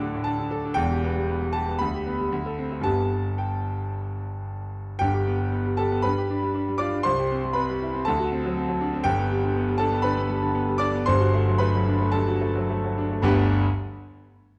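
A clear, open concert grand piano plays alone from the start, up front with deep bass across a range from E1 to F#6, in a heroic, sparkling virtuoso piano study in G major, cut from a longer piece, moving in a rubato 4/4 at 103-122 BPM through harmonies such as G7, C and D7 before slowing down from 8.1 to 13.2 seconds and settling on G, heard in a moderate recital hall reverb through worn, warbling old cassette tape with drifting pitch.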